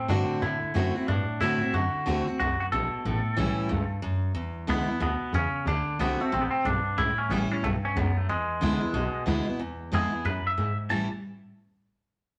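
A twangy electric guitar carries the melody up front in this rollicking, rowdy rockabilly cut, its clean, compressed, scooped tone sitting in a picked line that ranges from G#3 to A5. Beneath it, a bright, full-bodied jumbo steel-string acoustic guitar with fresh strings picks out the accompaniment, also placed up front. A pizzicato upright bass with gut strings enters at 0.1 seconds, giving a woody, dark, thumpy low end. The tune drives along at 183 BPM in 4/4 with a swung eighth-note feel, cycling through D7, A7 and E7 before landing on A7 at 10.9 seconds. A moderate studio reverb lends the trio a sense of room, and the clip breaks off as part of a longer piece.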